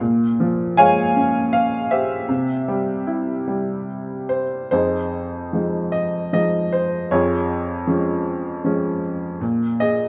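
Classical solo piano in F minor, this brief, reflective and dark passage moves in a rubato 3/4 at around 71-80 BPM, cut from a longer piece. A single upright piano, clear and up front with a worn, woody, slightly detuned character, carries the lyrical line across a range of F2 to Ab5, its harmony moving from Bbm7 and C into Fm7 and Db/F before settling on Bb7(no3) near 9.4 seconds. A moderate reverb, like that of a scoring stage, gives the instrument a sense of space, and the second section begins at 4.7 seconds.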